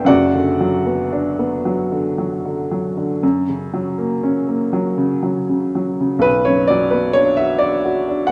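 A clear, woody upright piano plays alone from the very start of this brief cut from a romantic classical nocturne in B minor, its yearning, mournful music unfolding with rubato in a slow 12/8 at 37-46 BPM by the dotted quarter across a span from F#1 to G5, sitting natural and up front in a wet scoring-stage reverb, with the harmony moving from Bm/F# to F# before a new section begins on Bm at 6.3 seconds.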